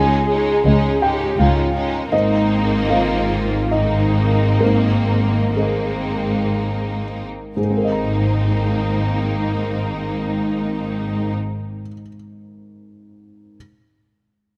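A worn, intimate baby grand piano with audible action noise accompanies this uplifting, moving cinematic film-score excerpt in Ab major, a rubato 3/4 at 58-83 BPM that slows between 1.0 and 7.6 seconds as Dbadd9 gives way to Abadd9, while a focused violin section holds the melody on Eb4 over a lush, distant second violin line, smooth vibrato violas, background cellos and soft-attack double basses, all bowed under light reverb and close, detailed miking until the strings stop at 11.3 seconds and the piano alone rings on to 13.6 seconds.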